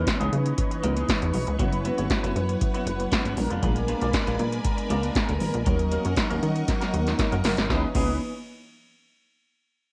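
A punchy, wave-folded analog bass and an up-front electro drum machine with a deep kick and metallic hats drive this danceable early-eighties boogie funk groove at 118 BPM in C# dorian, alongside dark, chorused synth brass, a twangy clean electric guitar riff, lush phased string-machine chords and faint, distant congas in a moderate plate reverb, before a drum fill at 6.7 s leads back to C#m9.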